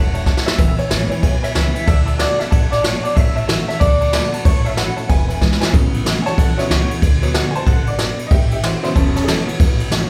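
A swung 4/4 groove at 186 BPM drives this upbeat, rollicking rockabilly fragment in A major, cut from a longer piece and tuned a touch flat to A4 = 438 Hz. Up front, a jazz brush drum kit with a boomy kick, medium-tuned snare and dark ride cymbal keeps the pulse, dropping in quick fills at 0.3 and 5.4 seconds, while a woody, thumpy upright bass on gut strings sits low in the background. A twangy, slightly broken-up electric guitar through a small old amp carries the melody for the opening 5.6 seconds, colored by vibrato and slapback echo, over a fresh-stringed jumbo acoustic guitar picking sixth chords around A, D and E. From 5.7 seconds a jangly, metallic tack piano, present throughout, takes over with a honky-tonk solo through to the end. The band plays live in one room, caught in a moderate, large studio reverb.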